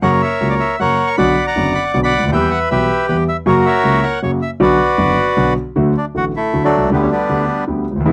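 This is a dry, close studio recording in a 1970s style, touched by light reverb, with both instruments set up front. It is a nostalgic, passionate tango in 3/4 at 157 BPM, played with a rubato feel in B harmonic minor and tuned to A4 = 441 Hz. The bandoneon carries the melody with a reedy, dark and smooth tone across a broad register. Beneath it, the warm concert grand piano supplies the accompaniment with deep bass, an intimate, natural sound and audible action noise. The harmony moves through F#, Bm, Em and back, then shifts toward D and G/D when a new section begins at 5.8 seconds; the bandoneon stops at 7.6 seconds, leaving the piano to close this fragment of a longer piece.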